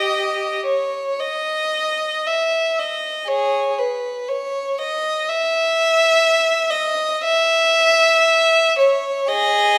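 A lone violin opens the recording, singing a rich, smooth line with vibrato between G4 and E5 across the full 9.8 seconds. This brief classical fragment, cut from a longer piece for unaccompanied violin, moves in a free, rubato 4/4 at roughly 54-63 BPM, its even bowing carrying a lonely, meditative mood. The single player sits up front, surrounded by the moderate reverb of a recital hall with a 1.5-second decay, and the tuning rests slightly low at A4 = 437 Hz.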